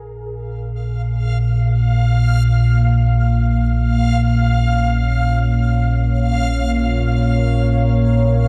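A deep, ominous rumbling drone sits up front from 0.2 seconds, anchoring this unsettling dark ambient excerpt in free time on a Bb minor chord, while a reversed, dreamy texture glints bright and granular high above from the start and a moody, detuned pad with chorus enters at 1.8 seconds with sustained chords, all bathed in a huge, wet reverb.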